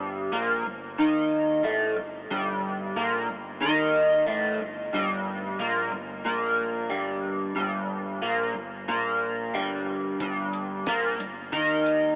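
A dark, picked electric guitar riff through a small old amp, slightly broken-up and flanged, sits up front over a growling, overdriven fingered bass in the background, opening this mysterious psychedelic rock excerpt in G minor at 91 BPM, before a cloth-damped, thuddy drum kit with a fat snare, tight kick and hi-hat arrives at 10.2 s, the dreamy mix soaked in a huge ambient reverb with an AM radio sound.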